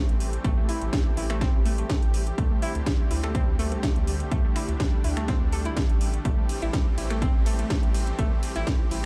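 A dry, close mix opens this bittersweet, dreamy progressive house excerpt in A minor at 124 BPM, where an up-front, punchy overdriven electronic kick drives a house kit of finger snaps, metallic hi-hat, ride cymbal and cracking snare, also overdriven, beneath a deep, wave-folded analog bass, a lush detuned supersaw pad holding sustained chords and a mellow, gentle pluck playing arpeggios through chorus and dub echo, with the bass, pad and pluck each pumping to the sidechain as the harmony moves from Am7 to D7sus4 at 2.4 seconds and back to Am7 at 6.3 seconds.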